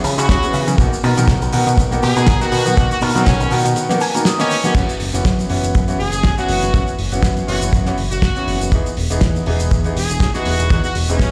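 A sunny, groovy nu-disco excerpt at 121 BPM opens with an envelope-filtered electric guitar riff, twangy and clean with a subtle chorus, over a fat, nasal analog bass and a damped 70s drum kit whose snare sounds dry and fat, with tube shaker and congas sitting bright and vintage in the background. Within the first half second a brilliant trumpet section enters with light vibrato and delay, followed by a tight, dry kick that sits loudest in the mix and a smooth grand piano carrying long sustain, sidechain pumping and digital delay. The sixteenths carry a gentle swing, and the harmony moves from C#m7 to Bmaj7 before shifting to F#7sus4 at 4.8 s and Emaj7 later on. A clean electric guitar fill leads out of the opening drop, after which the guitar riff and hand percussion stop at 4.7 s, leaving bass, drums, trumpets and piano to carry the groove. The whole mix has the stony reverb of a big sound system played in a bare room.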